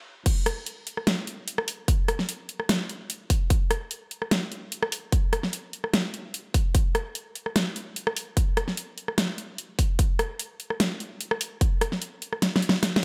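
A punchy, overdriven electronic kick sits up front in this menacing, aggressive half-time dubstep drop, which hits at 0.3 seconds after a brief stop and carries a small-room ambience. A layered dubstep drum kit is also up front, with a huge snare, bright hi-hats, rim clicks and crash cymbals in a tape-warm tone, while a high-pass-filtered digital ambience hovers alongside. The kick stops at 11.7 seconds, and the kit plays a drum fill from 12.4 seconds as this cut from a longer piece ends.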